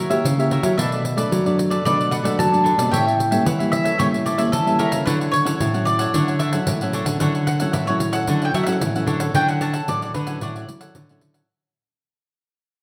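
A wet, large studio reverb surrounds this joyful, sunny samba and choro excerpt, cut from a longer piece. A warm, picked bowl-back mandolin with double strings carries the melody over a bright, crisp cavaquinho, a dark, fingerpicked classical nylon-string guitar with audible finger squeak, and a second, full-bodied nylon-string guitar thumb-plucking the bass line, while a jingly pandeiro sits close and dry. The harmony moves from F#7b9 through Bm7 and A7b9 to Dmaj9, and the music fades out from 9.3 s to 11.5 s as a new section begins.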